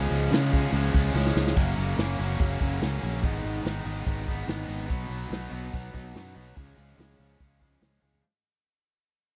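A straight 4/4 pulse at 144 BPM drives this confident, swaggering classic rock excerpt in F# major, cut from a longer piece. An overdriven, double-tracked electric guitar sits up front with a bright, picked riff, joined from the start by a round, fingered electric bass. The acoustic drum kit enters at 0.3 seconds with punchy kick, a medium-tuned snare, hi-hat, crash and toms, its top end rolled off, and a drum fill bridges into the main passage at 1.6 seconds. From there the harmony moves from F# through G#m and B back to C# while the track fades out, with a last drum fill at 8.0 seconds. The sound is dry and close in a small room, like a 1970s studio session.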